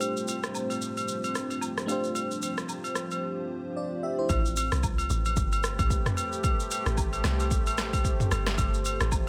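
Amapiano at 112 BPM in A minor, this short excerpt moves with a deep, hypnotic sway, its sixteenths swung at 58%. A lush, dreamy FM electric piano layered with a soft pad sits up front with chorus and a low-pass filter, playing accompaniment only until 4.4 s, while a dark, moody ambient pad of detuned sawtooth and sine with a sub octave holds sustained chords throughout, its slow attack and long release softened by chorus and its own reverb. An electronic deep house drum kit with a deep kick, punchy snare, rim click, shaker and toms drives the groove up front, accompanied throughout by close acoustic agogo bells and woodblock, plus egg shaker and group handclap. The opening passage carries a filter sweep over a G7sus4 chord, then at 4.3 s the drop arrives on Am9 as a round, percussive log drum bass enters, its fast attack and decaying tone giving a dark thump in the lowest register. The harmony returns to G7sus4 near the end, and light reverb gives the whole a gentle sense of space.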